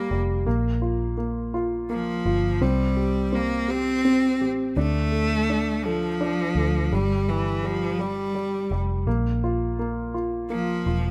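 A bright, intense bowed cello carries the melody with close vibrato over an intimate concert grand piano with audible action noise and a dark, round, foam-muted electric bass, shaping a melancholic, dramatic pop excerpt in a slow 6/8 at 56 BPM, moving through Bb5, C5, Dm and Fsus2 in a rough home demo mix with light small-room reverb.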